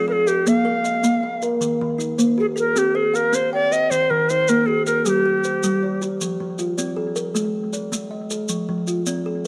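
An airy, bright cedar flute with vibrato and a soft attack sits close and up front until 6.0 s, over two interlocking kalimba arpeggios, one hollow and short with tape echo and the other ringing and dark, plus grainy, dry maracas, in this hypnotic, warm fragment of a southern African traditional mbira-style cycle in 12/8 at 105 BPM, set in F equiheptatonic under moderate plate reverb.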